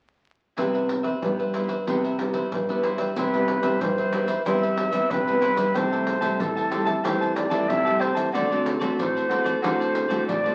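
Cut from a longer piece, this lively, joyful samba-choro fragment opens at 0.6 s with crisp, picked cavaquinho, fingerpicked classical nylon-string guitar chords, a deep nylon-string bass line on fresh strings, and a compressed, saturated percussion bed of tight surdo, hard-handed pandeiro and maracas, moving from Cmaj7 through Am7/C to D7, before a breathy, close-miked concert flute with a soft attack and straight tone enters up front at 3.2 s as a second line, the sound wrapped in wet studio reverb and the crackle of a very old 78 rpm record.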